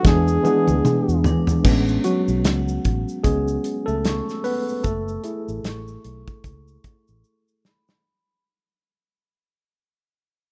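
A mellow flugelhorn note with light vibrato opens this lush, romantic 1970s-style soul excerpt over a worn, slightly out-of-tune tine electric piano with light overdrive, a dark, round foam-muted fingered bass and a small-room soul drum kit with dark cymbals and a tight kick that plays fills, joined by a grainy tube shaker and, from 1.3 seconds, a metallic, ringing vibraphone in the background, before the electric piano takes a solo from 1.6 seconds as the rough demo-style mix fades out.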